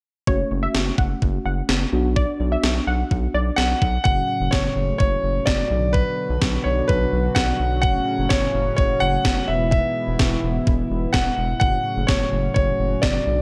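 An excerpt of melancholic, cool synth-pop in F# minor at 127 BPM opens at 0.3 seconds with a warbling, lo-fi pluck and a clean tine electric piano under a filter sweep, over a round, deep analog bass and a thumpy, up-front 80s drum machine with gated reverb on the snare, before an intimate concert grand piano with audible action noise takes the melody at 3.6 seconds and a shimmering pulse-width pad adds sustained chords from 4.1 seconds as the harmony moves through F#m, Bm and E.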